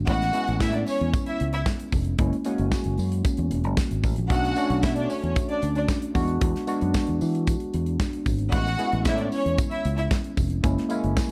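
A worn, slightly out-of-tune tine electric piano opens this sultry, driving disco excerpt alongside a punchy fingered electric bass, the piano lightly overdriven through a combo amp with an analog chorus coloring its chords. Almost at once a tight modern drum kit joins with kick, medium-tuned snare and hi-hat, sitting up front with the bass in a small room. A rich, focused string section carries a bowed second line with vibrato above the keys, while a jingly, band-limited vintage tambourine stays in the background. The harmony moves through Amaj7, F#7, Bm7 and E7 before returning to Amaj7 and F#7. The strings drop out at 10.1 seconds, and the electric piano adds a short fill at 11.2 seconds as the cut ends, all set in light reverb.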